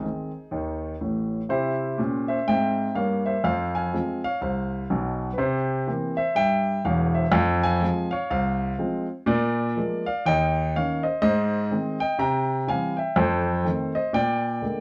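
Swung eighths at 124 BPM in 4/4 drive this playful, exuberant stride jazz fragment, played by a solo grand piano that sits warm and up front across a range from E1 to Bb5. The harmony opens on Ab, then moves from 1.5 seconds through a C7 and Fm progression and a cycle of dominant sevenths before returning to Ab. A moderate small-room reverb and a dark production color the sound, with the instrument tuned to A4 = 445 Hz.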